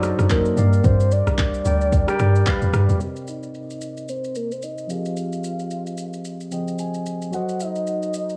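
This amapiano excerpt opens on a drop, with a deep, round log drum bass sitting up front alongside a deep house drum kit of deep kick, handclaps, rim click and shaker, while a tine electric piano and a soft octave-layered synth lead enter together. The mood is hypnotic and deep, moving at 111 BPM in 4/4 with a swung sixteenth-note feel in C minor. The log drum has a dark, percussive FM character with a noise layer, a fast attack and a decaying tail, and it drops out at 3.0 seconds as a filter sweep begins. The clean, direct electric piano carries the chords through a low-pass filter, adding a short fill at 6.5 seconds, while the full, sustained synth lead blends triangle and sine tones with a sub octave, chorus, vibrato and tape echo. The layered, tape-warm drums stay prominent in a dry, small room, and the whole recording has the worn, warbling pitch drift of old cassette tape.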